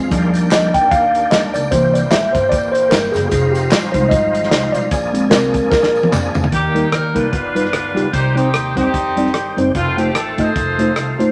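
Uplifting, reverent uptempo gospel at 150 BPM in Eb major with a swung feel, where a mellow tine electric piano takes the lead over gritty, overdriven tonewheel organ chords turning through a slow rotary speaker, woody pizzicato upright bass, a dry, up-front soul drum kit and background tambourine and handclaps, until a drum fill at 5.7 seconds ushers in a bright vintage saxophone section carrying the melody from 6.5 seconds as the hand percussion drops away, all in a moderate studio reverb.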